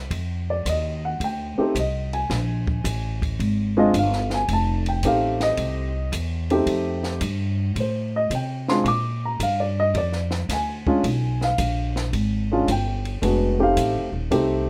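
Swinging and warm, this short small-group jazz excerpt moves at 110 BPM in a 4/4 swing, centred on F mixolydian with chords shifting from F7sus2 through Bb7 and a Bdim7 before settling back on F9. A woody, pizzicato upright bass with steel strings sits up front and opens the piece at 0.0 s. A compact cocktail drum kit with dark cymbals, a high-tuned snare and a punchy kick follows almost immediately with a dry, natural sound, and a dark, mellow upright piano comps close at hand from 0.5 s, all within a moderate studio reverb.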